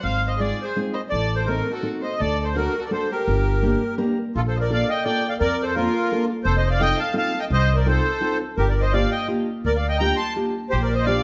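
Musette waltz in a bittersweet, whirling mood, cut from a longer piece, where a reedy, sweet accordion with light tremolo tuning carries the melody up front, a dark, bowed violin adds an expressive second line with vibrato and portamento, a woody pizzicato upright bass anchors the bottom, and a fingerpicked steel-string acoustic guitar joins at 0.4 s with dark accompaniment, all set in a moderate recital hall reverb.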